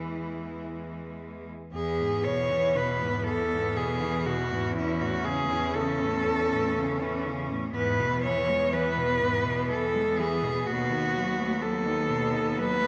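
Heard through the wet reverb of a scoring stage, this short excerpt from a longer classical work sets four bowed cellos in a lyrical, tender and serene passage in E major. The pace is slow, around 61 BPM in 3/4, with uneven beats and a rubato feel that lets each phrase breathe. Up front, a rich, focused cello carries the melody high in its range with vibrato. Behind it, a distant, smooth cello sings a second line, while another cello with an intense tone and smooth top shapes the accompaniment, and a fourth, even and clear, holds the bass. The harmony moves from E to A/E, returns to E at 7.8 seconds, and reaches B7/D# near the close, all four parts sounding together throughout the 12.9 seconds.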